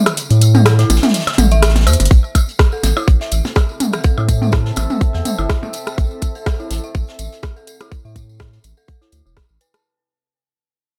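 A dry, close-sounding excerpt of clinical, hypnotic minimal techno with a swung sixteenth feel, where a thick, saturated sub bass pumps up front beneath an eerie, inharmonic FM synth bell riff treated with chorus and digital delay. The opening drop layers a booming analog drum machine with metallic hats and rim clicks, a jingly tambourine, delayed electronic blips and toms that stop at 5.7 seconds, and a high-passed jazz brush kit sitting in the background, with a drum fill just before a tight, layered electronic kick lands at 2.1 seconds. From there the piece fades out as a moody, wave-folded sawtooth pad with ring modulation and built-in reverb slowly rises in at 3.4 seconds, pumping along with the bass and bell.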